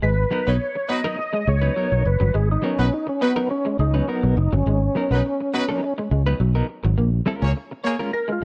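An overdriven tonewheel organ carries the melody up front, its gritty, percussive tone shaped by second-harmonic percussion, chorus vibrato, a slow rotary speaker, tube saturation and tape echo as it solos through this short funk excerpt. The mood is sly and cool, moving at 104 BPM in a straight 4/4 feel in G# dorian, with the harmony resting on G#m9 before shifting to A#m7 at 7.0 seconds. Beneath it, a round, dark fretless bass sits prominently and stops at 7.5 seconds, while an electric guitar through a small old amp plays a slightly broken-up, lo-fi riff treated with ensemble chorus. A clean semi-hollow guitar adds fingered, compressed accompaniment with tremolo. A clear horn section with light vibrato enters at 0.5 seconds to carry a second line in a pop style. Light reverb and a cassette-tape character frame the recording.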